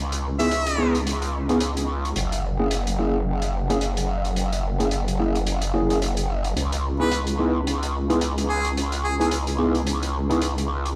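Played through a big sound system in a bare room, this gritty, playful glitch hop excerpt sits in a large studio reverb, with a swung sixteenth-note feel over a C#m9 to F#7 vamp. A growling, saturated sine bass wobbles up front through a formant filter and chorus, while a muffled, lo-fi acoustic hi-hat with a rolled-off top ticks behind it and a clean tine electric piano, heard through a combo amp, adds stabs with analog chorus and dub echo. A clear, pop-style solo harmonica touches in briefly at 0.4 seconds and returns at 7.0 seconds, its line trailing off in dub echo.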